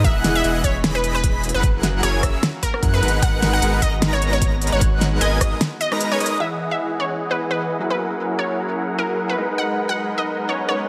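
Light reverb gives this emotional, dreamy future bass excerpt in G# minor a polished sheen at 151 BPM with a swung half-time feel, as huge, lush supersaw chords and a punchy, detuned unison pluck melody ride an Emaj7, F#7, G#m7 progression over a thick, saturated sub bass and a knocking, tape-warm electronic kick. A pop drum kit with a fat snare, crisp hats and rim clicks sits up front while an airy lead with chorus and vibrato floats high arpeggios in the background, and every part but the drums pumps with sidechain. The kick and bass stop at 5.5 seconds for a brief break, and from 6.4 seconds a filter sweep moves across the dark, softly bowed string section beneath the pluck and supersaws.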